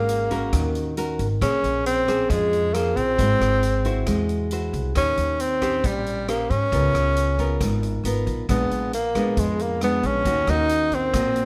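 This wistful, melancholic bossa nova fragment, cut from a longer piece, moves at a straight 136 BPM in 4/4. A breathy tenor saxophone carries the melody up front as the solo voice, its subtone, vibrato and scooped notes giving it a jazz-style intimacy, with a plate reverb adding a soft sheen around it. Underneath, a nylon-string guitar is fingerpicked in a classical manner, sitting a little back in the mix and offering a warm accompaniment. A pizzicato upright bass supplies a woody low end, while a swinging big-band drum kit enters at 0.1 s, keeping to hi-hat, rim click and a punchy kick with the natural sound of a big room. The harmony drifts through rich, bittersweet chords such as Bbm9, Abaug7 and Bb7b9 before settling on Ebm7, all within a light overall reverb.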